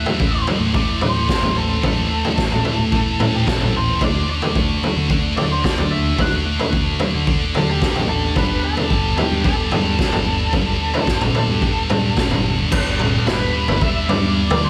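A straight 4/4 pulse at 110 BPM drives this angsty, cathartic quiet-loud alternative rock excerpt, where a raw garage drum kit with a boomy kick, gritty saturation and a rolled-off top sits up front beside a scooped high-gain guitar riff, a very quiet, twangy twelve-string electric guitar picks clean compressed arpeggios, a fuzz fingered bass hums in the background, and a dark octave-fuzz lead guitar carries the melody through slapback echo and analog delay, all moving from Am to D to Gadd9 before landing on G at 12.7 seconds inside a lush hall reverb that gives a big arena sound.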